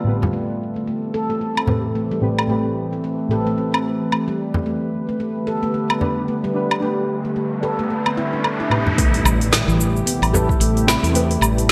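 A ringing, meditative handpan plays up-front arpeggios through a low-pass filter and delay, over deep, dark chord stabs with chorus and phaser and a warbling, nostalgic lo-fi pad, both pumping with sidechain, in this hypnotic, earthy organic downtempo clip with a swung sixteenth feel. A close, dry frame drum enters almost at once, an overdriven afro-pop kit of woody snare, metallic hats, shaker and woodblock with gated reverb follows from 1.6 seconds, and an electronic riser from 7.1 seconds leads to an impact at 9.0 seconds. There, a deep overdriven electronic kick and a round, hollow-body fretless bass with tube saturation arrive under the Am7 chord, all set in a lush hall reverb with bright 1980s-style digital polish.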